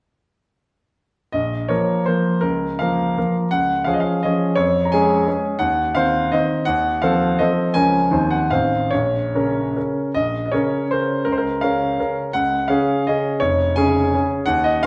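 Set in a wet recital hall, a bright, up-front baby grand piano with long sustain plays alone from 1.3 to 14.9 seconds in this nostalgic, capricious romantic classical dance in 3/4 and Bb minor, its dotted rhythms and rubato tempo ranging from 134 to 183 BPM as the opening section returns at 10.1 seconds over chords moving from Bbm through Db, Cdim/Eb and F7 back to Bbm.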